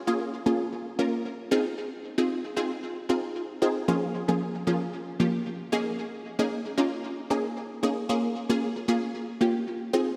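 This pop excerpt has a driving, confident mood in straight 4/4 time, carried by a single unison synth pluck that plays alone from 0.1 to 10.2 seconds. The pluck is punchy and bright, built from detuned sawtooth voices with a sine layer, a wave-folded edge and a noise layer, with a fast attack, a short decay and a moving notch in its filter. It sits up front, thickened by ensemble chorus and repeated by tape echo, moving between F3 and Bb4. The harmony moves from Bbm7 to Fm7, then Db6/F and Eb7sus4, and returns to Bbm7 at 8.1 seconds. The whole mix is soaked in a lush hall reverb with a long tail, giving the confident playing a dreamy, spacious glow.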